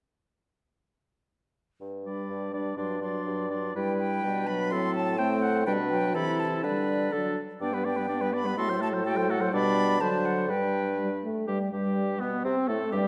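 A quick, graceful classical-period movement for wind quintet in G major at 124 BPM in a straight 2/4, cut from a longer piece and carrying a cheerful mood. The mellow, distant bassoon sets the bass from 1.8 s, and the roomy French horn joins at 2.0 s, followed at 2.1 s by the airy silver flute carrying the expressive melody with vibrato and a soft attack, the warm oboe on a second line with light vibrato, and the bright clarinet in accompaniment. Harmonies move between G, D7 and F#dim chords, and a wet scoring-stage reverb gives the dark, warm production a roomy space, with the flute's lifted highs adding brightness to the blend.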